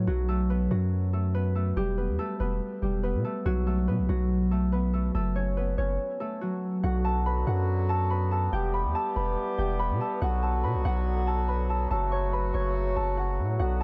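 Tense and menacing, this short drill cut from a longer piece moves in a half-time feel over a steady four-beat metre. A concert harp carries the melody throughout, its thumb-plucked acoustic tone ringing and up front, trailed by tape echo. Beneath it, a long sustained 808-style bass sits deep and close, a sine-like tone with a fast attack that then decays. The music halts briefly between 6.0 and 6.8 seconds, and then a mellow woodwind section enters with sustained chords, sounding distant and roomy with a light classical vibrato. The overall sound is dry, with little reverb, and the harmony circles through power chords and minor chords that keep the mood uneasy.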